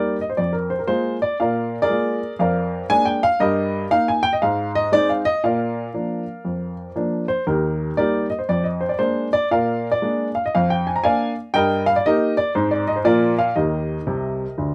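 Stride jazz with a swinging, playful mood, this short cut from a longer piece moves at 118 BPM in 4/4 with a swung eighth-note feel, carried entirely by a solo upright piano ranging from C2 to Bb5. The piano sounds woody and intimate, placed up front with audible action noise, and is captured by close, detailed microphones in light reverb. Its harmony circles through Bb7, Eb/G, Ab and Bb before closing on Eb, with a brief piano fill from 14.1 to 14.7 seconds.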